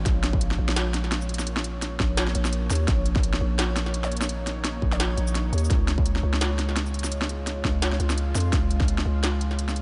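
The sound is close and lightly reverberant, with a digital ambience and a dark top end that never turns bright. This is a tense, heavy half-time drum and bass fragment at 170 BPM in Bb minor, swung a touch on the sixteenths and moving from Bb minor to Db at 5.7 seconds. Up front, a growling, buzzy 808-style bass with a fast, decaying attack sits beneath a distorted electronic kick and an industrial kit of clanging snare, smooth hi-hats and shaker, both carrying a warm tape character. A deep, moody pad of detuned sawtooth unison with a sub octave holds sustained chords under chorus and its own reverb, slow to bloom, long to release and pumping against the beat. A breathy, mellow concert flute with gentle vibrato surfaces very quietly on a single high note at 2.2 seconds and again at 7.8 seconds, a faint expressive glint over the weight below.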